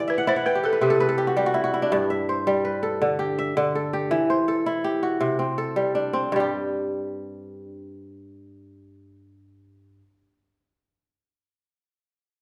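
A ringing, crisp kora sits up front in this joyful, hypnotic West African traditional excerpt, its fingerpicked arpeggios spanning G2 to G5 in G major at 109 BPM in a straight 12/8, opening with a fill that runs to 1.9 seconds. A woody, buzzing balafon struck with rubber mallets adds a brief, close-miked melody from 0.1 to 1.5 seconds, while the harmony moves through Em, C5 and G. The room is a wet recital hall reverb.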